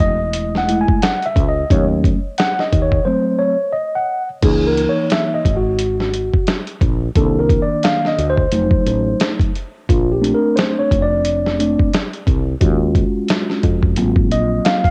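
Jazz-hop with a smoky, cool mood, this cut from a longer piece is led by a mellow tine electric piano that solos up front through its built-in speakers over lush extended chords such as F#m9, Cm9 and A#maj9, with a break from 3.1 to 4.4 seconds. A dark, growly fretless bass with a round, hollow-body tone sits close alongside it, while a pitched-down, muffled sampler-style kit supplies a thumpy kick, a medium-tuned snare, hi-hat and crash with 12-bit grit and cassette tape coloring. Light reverb and the home cassette recording give the whole track a swung, intimate lo-fi haze.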